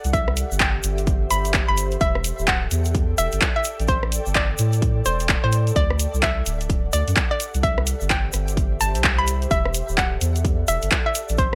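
A deep, round dub sub bass pumps beneath a punchy electronic kick and an up-front house kit of handclaps, hi-hat and rim click, setting a moody, late-night two-step UK garage groove at 128 BPM in E minor with a swung 16th feel. An ethereal pad with ensemble chorus and built-in reverb breathes in the background alongside a grainy egg shaker, while a hollow, nasal square-wave pluck carries the melody through chorus and digital delay over chords moving from C to Em7, A5, D7 and back to C before settling on Em9. The mix is dry overall, with the bass and drums sitting close and forward in this brief cut from a longer piece.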